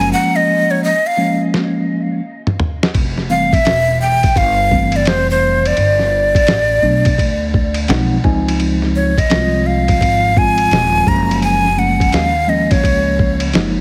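Smooth and relaxed, this jazz-hop passage is cut from a longer hip hop piece and rolls along in 4/4 with a lazy swing on the sixteenths. A breathy metal flute carries the melody up front, with a crisp attack, audible chiff, vibrato, a somewhat unsteady delivery, and analog delay trailing its phrases. It opens with a short solo over a break, and a drum fill arrives at 1.5 seconds. The muffled, tape-tinged sampler-style kit also sits up front, with a thumpy kick, a fat snare, hi-hat, ride and toms. A woody pizzicato upright bass anchors the low end, while a mellow, clean tine electric piano, heard through its built-in speakers, plays rich major-ninth chords and steps forward with a fill at 7.5 seconds. Light digital reverb surrounds the mix, which has a heavily compressed, radio-like finish.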